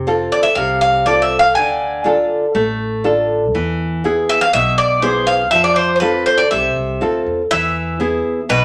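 A metallic, double-strung bouzouki leads this tense, dramatic Greek folk passage, its picked melody entering at 0.3 s with some octave-doubled strings and sitting up front in the mix. Beneath it, a bright, fingerpicked classical nylon-string guitar, also up front, plays accompaniment over chords moving through F, Dm and E, while a woody pizzicato upright bass plays low and soft. A wet studio reverb surrounds the band in this short cut from a longer piece, which shifts to a new section at 7.5 s.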